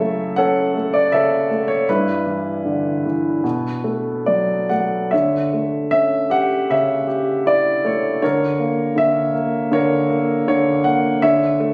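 A phone recording made in the room, with light studio reverb and compression, frames this short portion of a longer classical work, a lyrical solo piece for concert grand piano in B minor, moving in a rubato 4/4 at roughly 69-83 BPM. The warm, intimate piano sits up front with a deep bass, long sustain and audible action noise as it ranges from F#2 to F#5, its melancholic, dark harmony drifting from F#m7 through Em7/G and Bm7. From 5.1 seconds it opens onto A7/D and a shadowy Dmaj7#5 before settling on A/D near 11.2 seconds.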